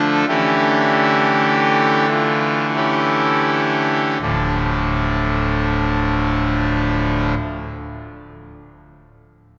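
The recording opens in a resonant church acoustic, its reverb hanging for about 4.0 seconds, with a solo pipe organ heard up front on a trumpet stop. This short classical excerpt, cut from a longer chorale-style piece, moves slowly in 3/4 at roughly 40 to 54 BPM with a straight feel, setting a dark and solemn mood in D minor. The trumpet stop has a brassy, bright baroque voicing, with a touch of chiff at the start of its notes, and its range spans from D1 up to A4. In the first section the tempo slows as an A7 chord sounds over a D bass. At 4.2 seconds it settles onto D minor, and the organ stops at 7.3 seconds.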